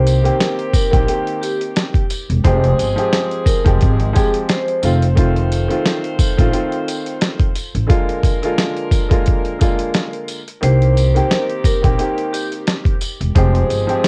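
A woody, pizzicato upright bass sits up front in this tough, dark boom-bap hip-hop excerpt, joined by a gritty, pitched-down sampler-style drum kit with a thumpy kick, medium-tuned snare and hi-hat, plus a faint, jingly tambourine heard from a large room. A smooth, vintage upright piano carries the Cm7, F7 and Bb7 chords throughout while a tight horn section adds clear stabs in the background, both colored by cassette tape in a dry home recording. A ringing vibraphone with slow motor vibrato states the melody through tape echo until 4.8 seconds and returns at 10.6 seconds, just as the kick briefly drops out.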